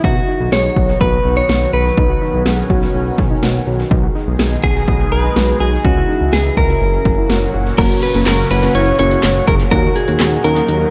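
Wistful and nostalgic, this short synth-pop excerpt in B major moves at 124 BPM over a punchy, overdriven house drum kit, a smooth gliding synth bass and a lush, thick unison pad treated with chorus and phaser, all bathed in spring reverb and an echo-heavy mix. Up front, a clean, direct-recorded electric guitar carries the melody through dub echo, while a warbly, lo-fi pluck spins dusty arpeggios in the background. At 7.8 seconds a funky, detuned polysynth comp and a background downlifter join as the harmony moves toward D#m.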